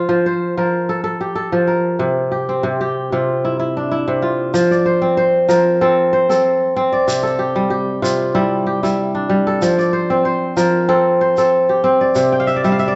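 A dark, warm production sits in a moderate recital-hall reverb, with the crisp, ringing kora placed up front as it fingerpicks arpeggios from C3 to G5. This hypnotic excerpt of West African traditional string music moves at 94 BPM in 4/4 with a light swing, in F major, circling between F and C chords. At 4.5 s a quiet, grainy tube shaker enters with a live-room feel, and the kora closes with a short fill at 12.3 s.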